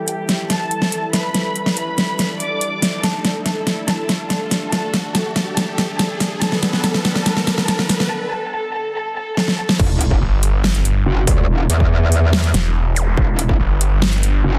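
Heavy wobble dubstep in E minor at 142 BPM with a half-time feel, this menacing excerpt opens as a build-up, with a thick, nasal unison pad holding sustained chords under a chorus and sidechain pumping while a dark, woody symphonic violin section carries the melody through a low-pass filter and delay. The dubstep drum kit runs throughout with a huge snare and metallic hats sitting up front, adding fills during the build, while a riser, sub drop and zap sit in the background. The chords move from Em through Dsus4 and G/D before a brief break, and the pad drops out at 8.1 s. At 9.8 s the drop hits with an impact, and a distorted electronic kick arrives alongside a metallic, wobbling FM bass with overdrive and chorus. A growling, detuned sawtooth bass with a moving notch joins at 10.2 s, its saturated snarl stacked beside the wobble in a dense, heavily limited mix with light reverb.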